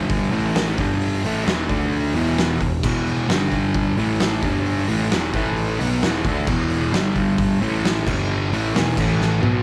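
A straight, driving four-beat groove carries this rowdy, raw garage rock clip, with an oversized low-tuned acoustic drum kit up front: a punchy kick, fat snare and dark cymbals in a saturated, pumping big-room sound, capped by a fill at 9.2 seconds. A dark, double-tracked fuzz guitar, picked and distorted, hammers out the riff over power chords moving among A5, G5, E5 and D5. Underneath sits a growling, overdriven picked electric bass, warm but tucked into the background, all in a small room with light reverb.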